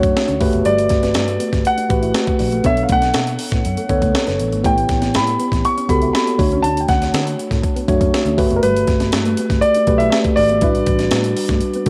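A lush, chorused tine electric piano with a cassette-tape tint sits up front in this breezy, glossy excerpt of polished 1980s jazz-funk pop at 120 BPM, carrying chords through Gmaj9, Bm9, A13 and Dmaj7 beneath a dark, intimate baby grand piano melody with audible action noise and long sustain, a round, foam-muted fingered electric bass, a very quiet, clean electric guitar riff, and a gritty, compressed sampler-style breakbeat kit with a thumpy kick and high-tuned snare, all in a light digital ambience with a homespun cassette feel.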